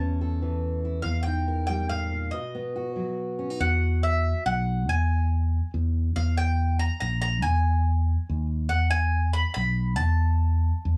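Indie folk with a hopeful, warm mood and a building arrangement, this fragment from a longer piece moves at 141 BPM in a straight 3/4 in E major, with a round, double-strung picked mandolin carrying the melody up front throughout, a full-bodied fingerpicked steel-string dreadnought guitar with audible finger squeak accompanying until 4.9 s, and a direct, prominent fingered electric bass anchoring the low end, all heard as a band playing live in a small room with a brief break at 2.3 s.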